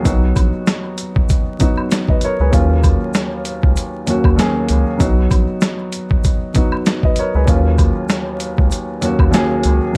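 A swung boom-bap groove at 97 BPM in 4/4 drives this tough, moody Eb minor hip-hop excerpt, where a gritty, compressed, pitched-down sampler kit with thumpy kick and medium-tuned snare sits up front beside a woody, intimate upright piano with audible action noise and cassette-tape character, a round, deep analog bass anchors the B to Ebm7 changes, and maracas with handclaps and woodblock trail dub echo in the background of an echo-heavy small-room mix dusted with vinyl crackle.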